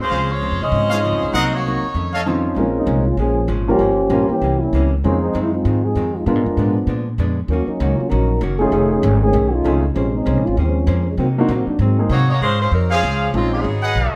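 Light reverb gives this swinging, joyful big-band jazz excerpt a gentle sense of space. It opens with a roomy saxophone section stating the melody over clear, soft-attacked trumpet stabs that sit loosely in the ensemble. At 2.6 seconds, a muted trombone section takes the solo, its bucket mute lending a veiled, dark tone with light vibrato and a smooth top. Underneath, a woody pizzicato upright bass sits up front, while an intimate vintage grand piano, its action noise audible, and a clean, picked hollow-body archtop guitar fill in the accompaniment. The saxophones return at 12.1 seconds and the trumpets at 12.9 seconds to restate the opening, over harmony rich in minor sevenths, altered dominants and major-seventh chords.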